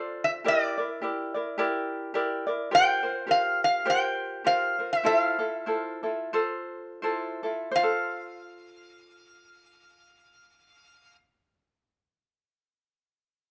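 Hawaiian music with a dreamy, relaxed mood, this short clip from a longer piece moves in 4/4 with a gentle swing on the eighth notes. A metal-body resonator slide guitar carries the melody from the start, its bright, nasal, metallic tone played with fingerpicks and sitting up front in a plate reverb. A light, fingerpicked ukulele accompanies it throughout with a warm acoustic sound, also placed up front. The harmony drifts through Em7b5 and C7sus4 before settling on Fmaj7, and the pace slows between 2.7 and 7.8 seconds. At 7.8 seconds a new section opens on a plain F chord, all within a moderate studio ambience.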